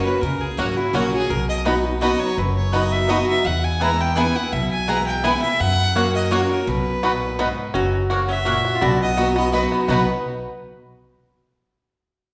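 A clear, biting fiddle carries the melody over a bright, boxy parlour guitar with audible finger squeak from the first moment, and a woody, thumpy upright bass on gut strings enters almost at once in this joyful, virtuosic bluegrass excerpt in B major, moving briskly at 168 BPM in 3/4. At 0.6 seconds a twangy, percussive banjo adds arpeggios, and a double-strung mandolin sits in the background with stabs, as the chords turn among F#, B and E. At 7.7 seconds a mellow, metallic lap resonator guitar played with slide and fingerpicks brings a second line, all set in the generous reverb of a recital hall.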